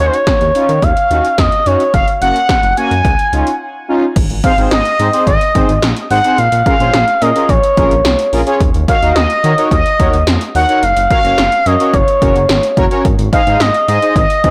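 Opening on an expressive, resonant sawtooth synth lead carrying the melody with chorus and delay over fat, nasal analog synth brass and a smooth, tube-saturated synth bass, this nostalgic, wistful synth-pop excerpt in Ab mixolydian at 108 BPM brings in up-front 80s electronic pad drums with a punchy kick, gated snare and metallic hats, pauses for a brief break at 3.6 seconds, then moves into a new section at 4.2 seconds, all captured in a blown-out, overdriven recording with light reverb.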